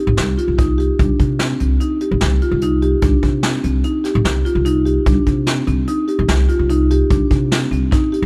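Set in an uneven 5/4 at 147 BPM with a straight feel, this progressive instrumental band piece moves with a driving, intricate pulse, cut from a longer piece and lasting about 8 seconds. A vintage brush drum kit, in by 0.2 seconds, plays hi-hat, snare and a punchy kick with brushes, its medium-tuned snare and rolled-off top giving a natural, small-room character. Underneath, a pizzicato upright bass with steel strings supplies a thumpy, woody low end between Bb1 and C3. A marimba struck with soft mallets on rosewood bars spins mellow, round arpeggios between C4 and G4. The music stays on a single C minor chord throughout, and with all three instruments up front and little reverb, the sound feels close and intimate.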